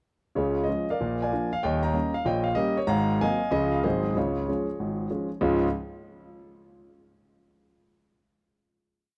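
A solo grand piano opens at 0.4 seconds with a swinging, playful stride piece, its clear, up-front tone carrying a tune over chords while a stride bass works underneath. The sound is intimate and natural, with audible action noise, light reverb and small room ambience in a close, 1970s-style studio recording. The brief piece moves through a quick jazz progression and settles on a final chord at 5.4 seconds, with the piano sounding until 5.7 seconds.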